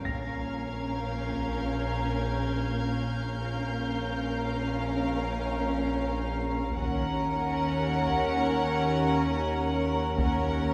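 A wet, reverberant hall sound surrounds this brief cut from a longer suspense film score, uneasy and eerie at a slow 71 BPM in straight 4/4, moving from Bb minor to Ebm7 at 6.8 seconds. Bowed sul tasto strings fill the whole passage: a distant, floating violin section carries the melody between F5 and Gb5, a woody violin line with vibrato holds Bb4 beneath it, and a close, pure viola section sits on Db4. Dark, intimate cello and double bass sections anchor the bottom, the basses very quiet, joined by an evolving analog drone of sawtooth and pulse waves with slow attack, long release and chorus. High above, a smooth-topped violin section floats between F6 and Ab6 until 6.3 seconds, while a brilliant, worn grand piano rings a Bb6 in the background until 6.8 seconds. A taiko ensemble with heavy sticks, close and dry in the background, sounds at the opening until 1.7 seconds and returns at 6.8 seconds.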